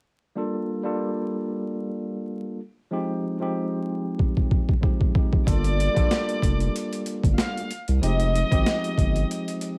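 Overdriven, pitched-down boom-bap drums with a thumpy kick and high-tuned snare come in with a fill at 4.2 seconds over a clean tine electric piano that has been cycling Gm9 and Fm9 from the start, and at 5.5 seconds a deep, saturated sub bass and a floating, sul tasto studio violin section with delay join this gritty, reflective 94 BPM hip-hop excerpt, all under light reverb and vinyl crackle.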